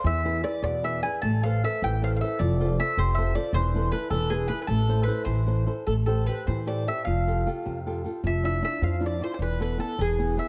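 A mandolin, flamenco guitar and upright bass enter together at once in this passionate, wistful Italian folk serenade in A minor. It moves in a rubato 6/8 around 103 BPM, counted in dotted quarters, and is tuned slightly low to A4 = 438 Hz. The picked mandolin carries the melody up front with a bright, double-string ring, touched by tape echo. The fingerpicked flamenco guitar accompanies close beside it, while the pizzicato upright bass sits most prominently beneath, woody and growly on steel strings. The harmony drifts from E through Amadd9 and F before settling on A minor, then turns at 5.9 seconds to Am7, Fadd9 and Dmadd9/F, ending on an unresolved Esus4 as this fragment of a longer piece cuts off at 10.5 seconds. A moderate spring reverb and a dark, warm production give the ensemble an intimate, nocturnal glow.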